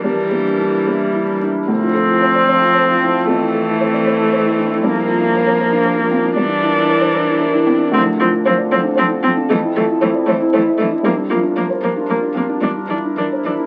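A rubato lilt in 3/4 at 115 BPM sets the pace for this neoclassical piano-and-strings excerpt in D minor, its mood one of longing and melancholy. A felt-muted upright piano carries the accompaniment across a span from D2 to D5, its thick felt giving a dark, mellow, intimate tone. A single viola, bowed sul tasto with light vibrato and an airy, soft attack, sits up front between G3 and D4, while a lone cello traces a quieter second line between E3 and F3. Alongside them, a warbly, tape-like pad of detuned sawtooth and triangle tones holds sustained chords with a slow attack and long release, colored by chorus, phaser and its own reverb for a nostalgic, lo-fi haze. The harmony circles through Em7b5/G, Dm7, Fmaj7 and Gm7, and the whole is heard in a moderate studio room on what sounds like a very old 78 rpm record, with vinyl crackle throughout.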